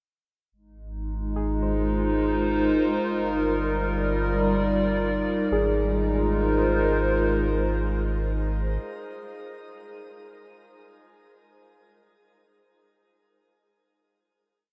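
Serene and luminous, this brief ambient piece in Ab lydian drifts at 72 BPM in 3/4, with a deep, round sub bass entering at 0.5 s beneath a warbling, nostalgic tape-like pad of slowly shifting chords washed in chorus, phaser and shimmer reverb, while muted, felt-like synth keys scatter soft, dark arpeggio notes in the background through tape echo until 10.5 s, all bathed in a huge, wet reverb that carries the Ab6 opening through Ebmaj7/G and back to a final Ab6 chord at 5.5 s.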